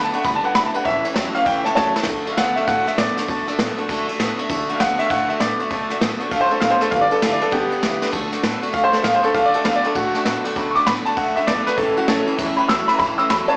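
Heard through a club PA with small-speaker sound and light club reverb, this rollicking, retro rockabilly excerpt swings at 198 BPM in D major, led by a brilliant, woody upright piano melody up front with slapback echo. A twangy, slightly broken-up electric guitar riff through a small old amp and a full-bodied dreadnought acoustic guitar in the background, both with slapback echo, ride over a thumpy gut-string upright bass and a brushed drum kit with dark cymbals and a boomy kick, which plays a fill at 1.9 seconds. A very quiet, detuned, jangly honky-tonk upright piano adds accompaniment at the start and returns at 9.3 seconds.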